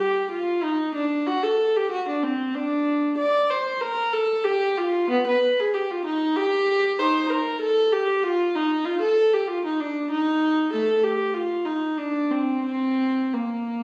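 Flowing and serene, this short cut from a longer classical piece is a baroque-style suite movement in 3/4 for unaccompanied viola, played with a supple rubato. The single bowed viola sits close and up front, its dark, nasal, reedy gut-string tone shaped in period style and ranging from A3 to D5 across the full 13.8 seconds. Captured on a phone in the room, the sound carries light studio reverb and compression.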